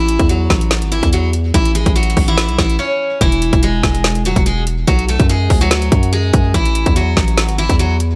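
A half-time 4/4 trap groove at 144 BPM drives this dark, menacing hip hop excerpt, with an up-front trap kit of hard-clipped kick, woody snare and metallic hats carrying a tape-warm sheen, a heavy, aggressive distorted 808-style bass with a noise layer and a fast attack that decays, and a full-bodied jumbo steel-string acoustic guitar whose picked melody, finger squeak and digital delay sit in a digital ambience over chords moving from A to E, Bm and A5, with a brief break at 2.8 seconds before the second section begins at 3.2 seconds.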